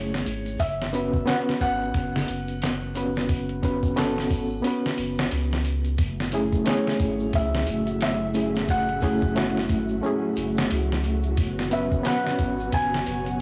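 A reedy, worn electric piano sits up front through its built-in speakers, slightly out of tune, shimmering with fast and harmonic tremolo and tape echo as it voices the accompaniment. This brooding, smoky trip hop fragment, cut from a longer piece, moves at 89 BPM in 4/4 with a swung sixteenth feel in F# minor, tuned to A4 = 439 Hz, circling between F#m7 and Bsus2/F#. Alongside it, a soft, felt-muted upright piano carries the melody with intimate, audible action noise and its own tape echo, while a deep, round sine sub bass holds the low end. A gritty, compressed sampler-style kit drives the groove with a thumpy kick and fat snare in a touch of studio ambience, and a band-limited, vintage egg shaker, triangle and group handclap sit in the background. At 6.0 seconds a dark, full-bodied string machine with cellos spreads sustained chords under an ensemble chorus, and at 6.6 seconds a very quiet, flickering granular texture drifts in. 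The whole mix is blown-out and overdriven, dusted with vinyl crackle and light reverb.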